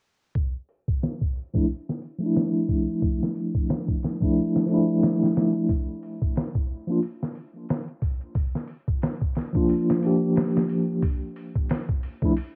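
A muffled, low-passed home cassette recording with light reverb and a filter sweep running throughout opens this brooding, melancholic trip hop excerpt in D minor, tuned to A4 = 436 Hz. From 0.4 seconds a pitched-down, compressed sampler-style kit sits up front at a swung 90 BPM, with a thumpy kick, a medium-tuned snare and hi-hat, all carrying tape warmth. At 1.5 seconds a mellow tine electric piano joins, clean and direct with tremolo and tape echo, moving through Dmadd9 and Bb before returning to Dmadd9.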